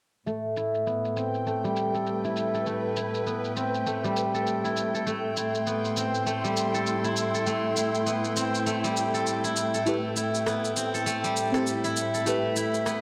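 Organic downtempo at 100 BPM in A minor with swung sixteenths, this meditative, hypnotic passage rests on an Am7 chord, where a veiled, con sordino string section holds bowed chords alongside a bright, silvery steel-string zither whose fingerpicked arpeggios ring through delay and a filter sweep, while a layered electronic shaker and rim click keep time under studio reverb, and at 9.9 seconds a deep, detuned chord stab with chorus, a fast attack and a decaying tail joins, all set in a lush hall reverb.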